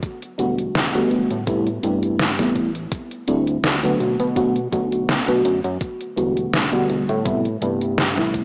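A detuned 8-bit drum machine opens this hazy, melancholic vaporwave excerpt, its hi-hat and medium-tuned snare sitting up front beside a thumpy electronic kick. Both drum parts are overdriven and carry the boxy character of being re-recorded in a small room. At 0.4 seconds a mellow FM electric piano and a chorused synth bass join in. The piano is soft and round with a dark edge and a faint noise layer, its decaying notes colored by phaser, analog chorus and tape echo as it moves through Em11, Am7, D7sus4 and Bm7 chords. Beneath it, the glossy, retro bass blends pulse, sawtooth and triangle tones with ring modulation and a plucky filter, sustaining in a low register. A lush hall reverb and the small-speaker grain of a cassette home recording wrap the passage in a dusty blur, over a lightly swung 4/4 feel.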